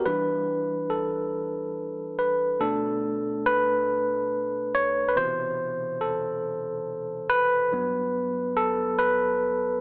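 Sultry and yearning, this short R&B fragment, cut from a longer piece, moves in a slow, straight 6/8 feel. A tine electric piano plays alone throughout its 9.8 seconds, sitting up front with a warm, clean tone heard through its built-in speakers. The recording carries a light reverb and a narrow AM radio coloring. After a brief opening passage on Em7, the harmony shifts at 2.6 seconds into a second section that moves through Bm7, Cmaj7 and Gmaj7. The piano covers a span from G2 up to C#5, giving the lone instrument both low weight and an upper register.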